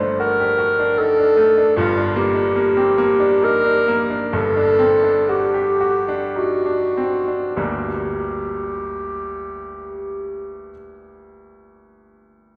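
A dark, soft-attacked clarinet carries the melody up front in this excerpt from a longer romantic chamber piece, its tone distant and roomy in a solemn, yearning classical style. Beneath it, a bright baby grand piano supplies the accompaniment with a brilliant, intimate and polished sound, its action noise audible in the mix. The music sits in G minor in a rubato 3/4, moving between 47 and 77 BPM and slowing down through the opening passage, with harmony that rests on a D over G before turning to G minor and a D7 over G. A new section arrives on a G minor chord at 7.6 seconds, the clarinet falls away at 10.7 seconds, and the piano carries on alone until 12.6 seconds. The whole duo is bathed in the wet, lingering reverb of a church or concert hall.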